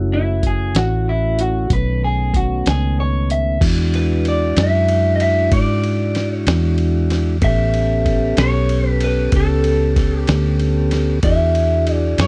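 A soft, flute-like tonewheel organ turning through a slow rotary speaker holds sustained chords over a dark, round, foam-muted fingered bass as this swaggering, soulful slow blues excerpt opens at 63 BPM in a straight 12/8 in E mixolydian, joined at once by an up-front, slightly broken-up electric guitar through a small old amp, tinged with phaser, that plays a clean solo melody until 3.6 seconds, while a muffled lo-fi sampler-style kit with thumpy kick, fat snare, hi-hat, ride and crash enters at 0.4 seconds, the chords moving from F#m7 and B9 to E9 and A9 within a dry, close 1970s-style studio sound.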